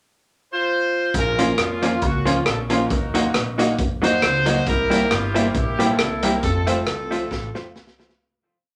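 Built on a driving, lightly swung ska groove at 136 BPM in 4/4, this short, mischievous piece in B-flat harmonic minor opens with a clear horn section playing a pickup phrase at 0.5 s before the bass and drums arrive at 1.1 s. The raw garage drum kit sits up front, with a side-stick backbeat, a boomy kick and a gritty, saturated tone in a small, pumping room. Beneath it, an upright bass walks with a woody, growly pizzicato sound. From 1.4 s, a dark, clean hollow-body jazz guitar chops the off-beats through tape echo, joined by a jangly, detuned honky-tonk upright piano stabbing on the off-beats as well. The horns carry a motif-based melody with light vibrato and a smooth top over chords moving from Bbm to C7 to F. A wet club reverb surrounds the band, and a drum fill closes out the fade-out that begins at 6.4 s.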